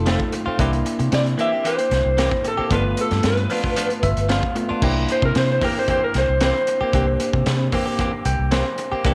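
A slightly broken-up electric slide guitar, played with fingerpicks, carries the melody of this swaggering, soulful straight-eighth soul blues at 114 BPM in C mixolydian over an F7, C7 and G7 progression, moving into a solo over C7 at 4.8 seconds. A bell-like tine electric piano comps and adds fills, one from 3.8 seconds, while a twangy, compressed clean guitar recorded direct plays picked stabs. An up-front, round, foam-muted vintage bass and a gritty, saturated breakbeat kit with a high-tuned snare, punchy kick and rolled-off top drive this short excerpt in light small-room reverb.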